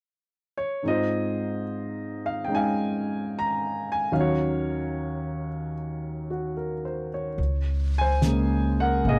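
A tender, intimate jazz ballad in a swung 4/4, cut from a longer piece. An open, up-front baby grand piano plays the accompaniment alone through rich seventh and ninth chords until 7.4 seconds. Then a woody, pizzicato upright bass with steel strings joins up front, and a brushed jazz kit with a medium-tuned snare and hi-hat sits far back, all captured in a dry, close 1970s-style studio sound with little reverb.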